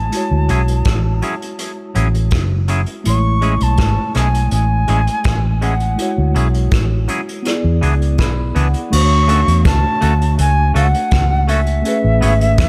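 A straight 4/4 pulse at 82 BPM sets this romantic, sweet lovers rock reggae in motion, carried by a vintage brush drum kit whose punchy kick, hi-hat, rim click and dark crash cymbal sound distant and roomy. Up front, a foam-muted fingered electric bass sits round and amped in the low register, the heaviest presence in the mix. A mellow tine electric piano, heard through its built-in speakers, supplies clean accompaniment and steps forward with a fill from 7.8 to 8.9 s as the music moves into a new section. The concert flute carries the melody with a pure tone, vibrato and soft attack, its expressive phrases trailed by tape echo, while a bright, twangy electric guitar adds picked stabs from 0.5 s, also touched with tape echo. The harmony moves through chords such as Dmaj9#11, Amaj7 and E7 before reaching Dmaj7 and Amaj9, set in a small room ambience, in a passage cut from a longer piece.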